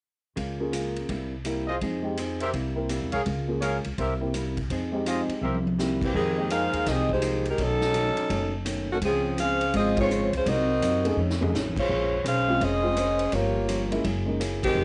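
A swinging big-band excerpt at 167 BPM opens with hollow-body jazz guitar, upright bass and drum kit all entering together, the dark, clean guitar sitting in the background while the woody pizzicato bass stays low and the kit brings a boomy kick and medium-tuned snare. A warm upright piano joins almost at once, and at 1.7 s a clear, present trumpet section cuts in with brassy stabs over chords moving between Db6, C7 and Fm7, giving the opening a dramatic edge. A drum fill leads into the second part, where the music settles into F minor and a mellow, close-miked saxophone section takes the melody up front with light vibrato and a soft attack. The harmony grows richer here, passing through Fm11, Dbmaj7 and altered dominant chords, with band accents at 9.9 and 14.6 seconds and another drum fill along the way. Most parts carry the muffled character of a home cassette recording with a moderate small-room reverb, and the piece is cut from a longer performance.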